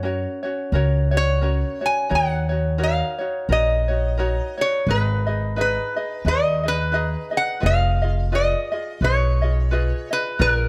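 A lazy swing on the eighth notes in 4/4 carries this dreamy, relaxed Hawaiian fragment, lifted from a longer piece. Up front, a lap resonator guitar sings the melody with a metallic, nasal slide tone picked with fingerpicks, while a light, fingerpicked ukulele adds bright accompaniment and a pizzicato upright bass on steel strings gives a woody, thumpy low end. Close, detailed microphones and light reverb frame the trio as the harmony moves into a minor-seventh passage at 2.1 seconds and settles on a half-diminished chord at 7.6 seconds.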